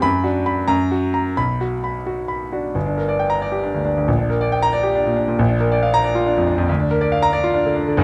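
A clear, intimate concert grand piano plays alone and up front in this agitated, passionate classical virtuoso study in G minor, moving in a rubato 6/8 at 91 BPM counted in dotted quarters, its deep bass, short sustain and audible action noise caught by close, detailed microphones in light reverb, as the harmony turns from B minor to G minor at 2.8 seconds and then moves to B-flat in this brief cut from a longer piece.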